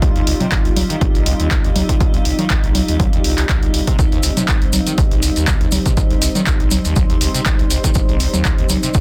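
Driving and trippy, this acid house excerpt runs at 121 BPM in 4/4 with a light 16th-note swing, sitting on a single C minor chord throughout. A squelchy, resonant sawtooth acid bass carries the riff between Bb1 and Eb3, its filter sweeping over overdrive and lush chorus, with fast-attack notes that decay. Up front, a punchy, tape-warm electronic kick anchors the groove, joined by an analog drum machine playing congas, handclaps and hi-hat, re-recorded in a small room. Beneath them, a smooth, warbling vintage pad holds sustained chords with soft attack, while a blurred, evolving granular cloud pad drifts in the background from 0.1 seconds, bright and full-bodied in its own reverb; the pads and bass all breathe with sidechain pumping. Grainy, mellow acoustic maracas enter at 4.0 seconds, adding saturated texture to a dry, dense and heavily limited modern mix.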